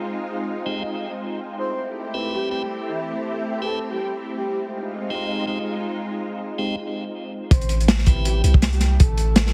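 A heavily compressed, radio-like sound with light small-room reverb frames this nostalgic, atmospheric drum and bass excerpt at 162 BPM in A minor, where a silky vintage string machine holds slow-blooming chords with ensemble chorus, a piping tonewheel organ with key click and stopped rotary speaker adds gritty, dub-echoed stabs, and a breathy flute-like synth lead with gentle vibrato carries the melody from 1.6 seconds. At the drop at 7.5 seconds, a crunchy, saturated breakbeat kit with a tight kick and medium-tuned snare arrives up front alongside a deep, mellow 808-style bass that sustains and decays. The flute-like lead returns over them, and the chords move between Fm7 and Am7.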